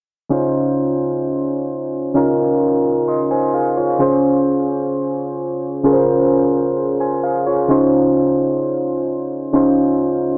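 Soft electric-piano-like synth keys play alone from 0.3 s to 10.4 s in this smooth, romantic R&B fragment at 65 BPM in Db major, their round, detuned tone with a fast attack and chorus sitting up front. The keys move from Dbmaj7 to Bbm7/Db and back to Dbmaj7 at 7.7 s, with mellow, decaying notes. A moderate concert hall reverb surrounds them, while a low-pass filter gives the whole recording a small speaker sound.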